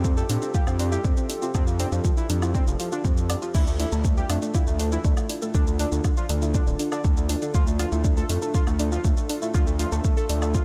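Melodic techno with a dramatic, dark mood, this short cut from a longer piece sets a fat, mellow analog lead melody with chorus, vibrato and analog delay over sustained chords from a moody, detuned analog pad that pumps with the sidechain in the background. A woody, wave-folded pluck spins arpeggios with a moving notch, subtle chorus and delay, while a gritty, saturated synth bass with a resonant filter sweep pumps beneath, its aggressive tone evolving over a harmony that moves from Fadd9 to Dm at 3.5 seconds. An up-front deep electronic kick drives the groove, joined by a deep house drum kit of crash cymbal, hi-hat, shaker and woodblock, all set in light reverb.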